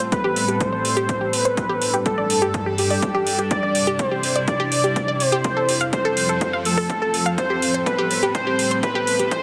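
A straight 4/4 progressive house build-up, expansive and emotional, sets a punchy overdriven electronic kick and metallic overdriven hi-hats under a thick, detuned unison lead melody with dub echo, round chorused analog pluck arpeggios, and an evolving, warbling wavetable pad with phaser, all three sidechain pumping in a huge ambient reverb. A drum fill arrives at 7.4 seconds just as the chords cycle back to Am7, and a barely audible riser enters at 9.3 seconds.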